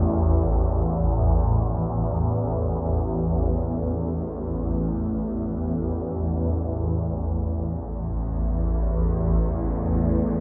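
Ominous and cavernous, this short ambient excerpt in free time is carried by a lone swarming drone, low and up front, whose detuned, warbling sine tones swell in slowly, sustain with a granular, evolving tension through a phaser and its own reverb, and hang in a dark, wet cathedral space with a six-second decay, shifting into a new section at 6.6 seconds.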